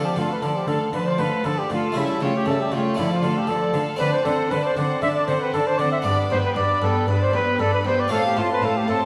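Brilliant and lively, this baroque-style concerto movement moves at 117 BPM in a straight 4/4, cut from a longer piece. A mellow, distant trumpet carries the melody up front, while a background violin section with light vibrato also plays the melody high above and a rich, smooth-topped second violin section adds a second line. A dry, round, close-miked harpsichord and a reedy gut-string viola section fill in the accompaniment, and a close period-style cello section joins on the bass at 0.2 seconds, all set in a wet recital-hall reverb over a Dm to A7/C#, Dm, D7, G and F/A progression.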